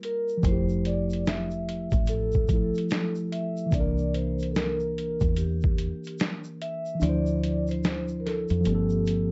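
A dark, filtered production with a moderate studio reverb frames this nostalgic, melancholic lo-fi hip hop excerpt with swung sixteenths: a ringing, metallic vibraphone played with soft mallets and a slow motor vibrato carries the melody through tape echo over a clean tine electric piano with cassette coloring, a gritty, pitched-down boom bap sampler-style kit whose thumpy kick drops out at 7.0 s, a round, punchy fingered dub bass entering at 0.4 s, and a grainy tube shaker tucked in the background, over chords of Fmaj9, C9, Dm9 and Gm11.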